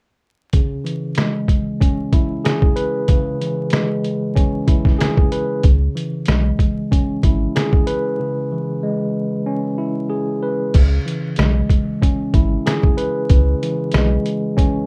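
Dark and tough, this swung boom-bap hip-hop excerpt pairs a gritty, pitched-down sampler-style drum kit of thumpy kick, medium-tuned snare, rim click, hi-hat and crash, sitting up front as if re-recorded in a small room, with a clean tine electric piano colored by cassette tape and filtering, while a deep sine-and-triangle sub bass with octave enters at 5.6 seconds, a break arrives at 8.2 seconds, and light reverb and vinyl crackle give the whole thing a rough home-demo feel.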